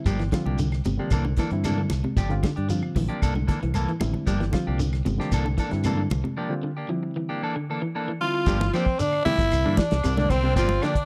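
A worn, slightly out-of-tune reed electric piano with light overdrive opens this hypnotic, defiant afrobeat groove in G dorian at 114 BPM, cycling between Gm7 and C13, joined at once by a twangy, slightly broken-up guitar playing arpeggios, dark clean guitar stabs bathed in spring reverb, up-front fingered bass, a dry, dark soul drum kit with a tight kick, a grainy, distant shekere, woody claves and bright, hard-handed congas, until a break at 6.4 seconds gives way to a raspy, gritty tenor saxophone melody at 8.2 seconds over a whispered alto second line as the piano drops out at 8.5 seconds, in a close 1970s-style studio sound.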